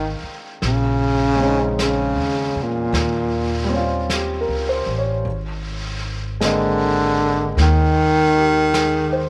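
A smoky, melancholic jazz ballad excerpt in a slow swing, where a breathy, up-front baritone saxophone sings a low subtone melody with vibrato and scooped notes over a warm concert grand piano with audible action noise, a woody pizzicato upright bass, and a vintage brush kit of snare and hi-hat that enters at 0.6 seconds, all bathed in moderate spring reverb as the chords move from Fm9 through Bbm11 and Eb13 to Ab.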